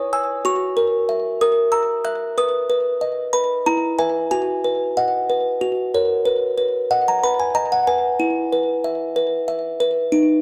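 A gentle 3/4 lullaby at 93 BPM in B major, this dreamy, innocent classical miniature cut from a longer piece features a solo music box, delicate, tinkling and slightly out of tune, sitting up front with a slapback echo and ranging from D#4 to F#6, its chords moving from F#7 through B and E before a second section begins at 6.3 seconds, all bathed in a moderate plate reverb within a dark, warm production.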